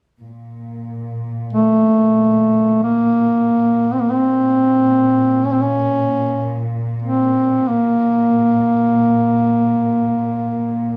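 Solemn and longing, this brief cut from a longer Caucasian folk piece moves in free time in B-flat harmonic minor. A studio cello section opens at 0.2 seconds, holding a low drone on B-flat with a woody, bowed ensemble tone and vibrato, set well back in the mix. At 1.5 seconds a solo duduk enters up front, carrying the folk-style melody within a narrow span from A3 to D-flat4. Its voice is dark with a smooth top, sitting clearly above the sustained strings until both parts end at 11.0 seconds. The players sound live together in one large studio, framed by a moderate reverb that lends the sparse arrangement a sense of space.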